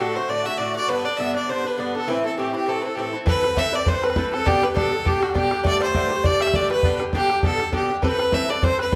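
A clear, earthy fiddle leads this spirited, wild Celtic reel at 202 BPM in A dorian, bowed up front with light vibrato over a bright, metallic Irish bouzouki whose picked double strings drive the accompaniment, while a reedy, shimmering musette accordion with a vintage, band-limited tone shadows it very quietly. At 3.3 seconds a twangy, plunky fingerpicked open-back banjo slips in on a second line alongside a damped, tight bodhran, close and dry, as the tune swings lightly over chords moving through G, Am and Dsus4. The band plays live together in a large studio with moderate reverb, in a short section cut from a longer piece.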